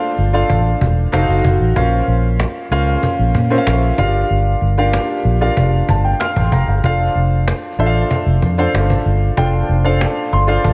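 A baby grand piano opens this glossy, upbeat slice of polished 1980s jazz-funk pop at 95 BPM in F major, its natural, up-front tone coloured by analog chorus and slapback echo as it moves through F6, F7b9, Bbmadd9 and Gm7 with short fills at 5.6 and 10.0 seconds, while a dark, round, foam-muted fingered electric bass joins at 0.2 seconds alongside a woody, soft-handed cajon with faint snares and its own slapback echo, the whole sitting in light studio reverb.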